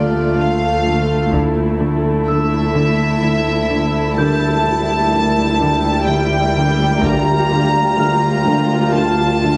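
Heavily compressed with a radio-like squeeze and a wet scoring-stage reverb, this ominous, uneasy cut from a suspense film score moves in 3/4. A sul tasto violin section carries a close, intimate melody up front over a dark viola section, a deep, moody ambient pad with chorus, and two cello sections, one playing a riff and one holding the bass, while a rich double bass section joins in the background at 1.3 s and again at 7.0 s and a very quiet taiko ensemble struck with hard sticks sits underneath from 1.3 s. From 2.3 s a delicate, bell-like celesta adds an airy texture at the back as the dark minor harmony shifts over a steady D.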